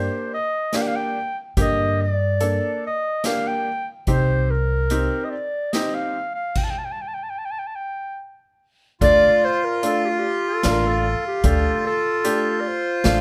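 A mellow, classically styled clarinet leads this festive, soulful klezmer piece, sitting up front with a touch of plate reverb as it carries the solo melody. Moving in 3/4 at 73 BPM with a straight feel, the music speeds up throughout, shifting from G minor to C minor before the band stops at 6.6 seconds. Underneath, a clear, worn upright piano accompanies with an intimate, slightly detuned sound, audible action noise and long sustain, while a dark pizzicato upright bass with steel strings adds woody depth up front. It drops out partway through, and a street-band drum kit joins just after the start, with a boomy kick, medium-tuned snare, hi-hat and dark crash cymbals in an airy, polished big-room sound. At 9.0 seconds the playing resumes in D minor, bringing the bass back and adding a reedy, close-miked accordion that holds a dry, full second line with slow beating. The recording has moderate studio reverb and close, detailed microphones, and the passage is cut from a longer piece.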